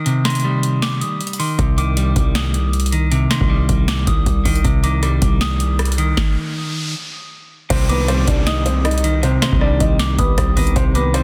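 Dark, hard-hitting trap in C harmonic minor at 157 BPM with a half-time feel, opening on a clean, picked electric guitar filtered low and up front, a booming analog drum machine with deep kick, crisp snare, metallic hats, rim clicks and crashes, and a soft, pure synth bell high above treated with chorus, phaser and tape echo. A distorted, aggressive 808-style bass pins down C from 1.6 seconds, and a background riser and downlifter build through a stop before a dark, mellow concert grand piano takes the melody at 7.7 seconds, joined by a faint, glassy FM pad holding ethereal chords. The dense, heavily limited mix stays dry and close, though the drums carry the sound of a large room.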